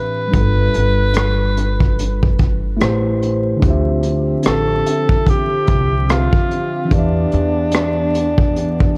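A dark, hazy lo-fi hip hop excerpt with vinyl crackle and light small-room reverb sets a melancholic mood at a relaxed 73 BPM with a swung sixteenth-note feel. A breathy tenor saxophone carries the jazz-style melody up front with light vibrato and scooped notes, over a mellow tine electric piano tinted by cassette tape and a low-pass filter. A woody, growly pizzicato upright bass and a muffled brush drum kit with a punchy kick, hi-hat and rim click join at 0.3 seconds, and a hollow, flute-like chorused pad fades in softly in the background at 3.6 seconds as the chords move from G7 and Am9 to Dm11 and Em7.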